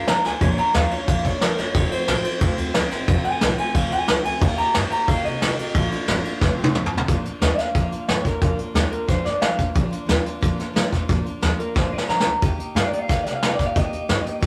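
Rollicking and rowdy, this rockabilly excerpt charges along at 180 BPM in a straight 4/4, centred on Bb major. An electric guitar through a small old amp carries the melody with a twangy, slightly broken-up tone and a touch of analog delay, stepping out for a clean solo over the first 7.1 seconds. Beneath it, a full-bodied picked dreadnought acoustic guitar fills in the accompaniment, while a pizzicato upright bass on gut strings sits in the background with a woody, thumpy sound. The vintage brush drum kit is the most up-front element, with a punchy kick, a medium-tuned snare, dark cymbals and a rolled-off top, adding drum fills just before the second section and again around 11.8 seconds. The chords move among Bb, F and Eb, and the whole take has the rough, lively feel of a rehearsal-room recording with a moderate studio reverb.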